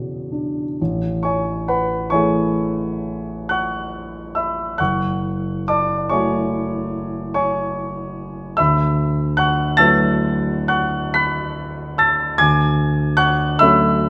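A grand piano sits up front in a reverberant recital hall, its warm tone wrapped in a wet decay that suggests a church or concert hall. This is impressionist classical solo piano in A major, dreamy and serene, moving at a slow 47 beats per minute in dotted quarters within a 9/8 metre. The beats fall unevenly, and the rubato keeps the pulse loose and floating. A high E6 rings first, and from 0.8 seconds the harmony drifts through Amaj7, F#m7 and D69 before settling on F#m7/D near 12.4 seconds. The piano spans from a deep F#1 up to a bright B6, tuned to A4 = 444 Hz, and this brief passage, cut from a longer piece, ends at 14.1 seconds.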